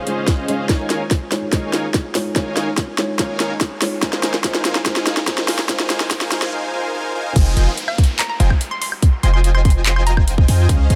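Bittersweet and dreamy, this half-time future bass excerpt opens with a soft, felt-muted upright piano and a huge, detuned supersaw riff carrying cassette-tape grit, both pumping under a filter sweep, while a trap drum kit with sharp snare and metallic hats, a hard-clipped electronic kick and very quiet risers and downlifters build through a drum fill to a brief break, until the drop at 7.4 seconds brings in a deep, boomy 808-style bass, joined soon after by a hollow, nasal square-wave pluck melody with chorus and delay, set in light digital ambience.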